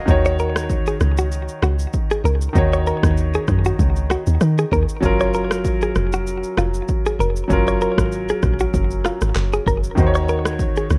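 Joyful and breezy, this afrobeats snippet sways on a gently swung groove as a clear, intimate grand piano with audible action noise and plate reverb carries the accompaniment, a deep, round log drum bass with a dark, percussive FM attack anchors the low end, a punchy, layered deep house kit of kick, handclaps, rim click and shaker drives it forward, and a clean, direct-recorded electric guitar riff with delay enters at 0.3 seconds, all moving from D#m7 to F#maj7 and back under a worn, warbling cassette-tape haze and light reverb.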